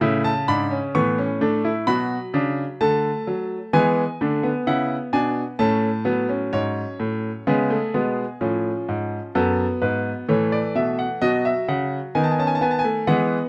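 A dark production with light reverb frames a bright grand piano placed up front, its natural tone carrying a brilliant edge and short sustain. This is a classical, baroque-style four-part fugue for solo piano, cut from a longer piece, moving at a stately yet lively 64 BPM in a straight 4/4. The piano covers a range from F#2 up to C#6 as it plays throughout the 13.5 seconds. The opening passage moves through A, Bm7 and E before returning to A. At 7.5 seconds a new section begins, shifting to C#7, then F#m at 9.3 seconds and B7 at 11.2 seconds.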